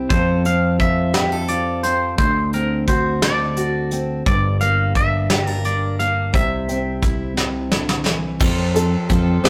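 Indie folk at 58 BPM in 6/8 and F major, warm and anthemic, this excerpt sets a full-bodied fingerpicked steel-string acoustic guitar and a dark, round fingered electric bass under a soft brush drum kit with a punchy kick, while an up-front twangy electric guitar carries the melody with harmonic tremolo over F, D7, Gm and C until 7.7 seconds, a drum fill arrives at 7.4 seconds, and at 8.4 seconds a bright, shimmering picked twelve-string acoustic guitar and a mellow, plunky open-back banjo playing arpeggios in the background join the build, captured as a rough rehearsal-room recording with moderate stone room reverb.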